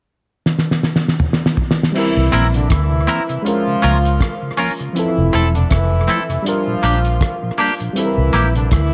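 This short excerpt of sweet, tender lovers rock reggae has a lightly reverberant studio sound, with the cloth-damped drum kit, round foam-muted bass and twangy guitar sitting up front. At 80 BPM in 4/4 with a 16th-note swing, it opens on a muffled drum fill from 0.5 s, the kit thuddy and gritty with a fat snare, tight kick, dark cymbals, rim clicks and toms, all trailed by dub echo. The FM electric piano comes in at 1.9 s with a dark, decaying tone, and the horn section follows at 2.0 s as a second line, smooth-topped and tight with octave doubling, a light vibrato and its own dub echo. From there the vintage fingered bass anchors the low end with a punchy, amped sound, while a soft, flute-like tonewheel organ with key click and chorus vibrato sits in the background. The bright, clean guitar adds picked, compressed stabs coloured by lush chorus. The harmony moves through C7, Db6, Fmaj7 and Bb6 before returning to C7.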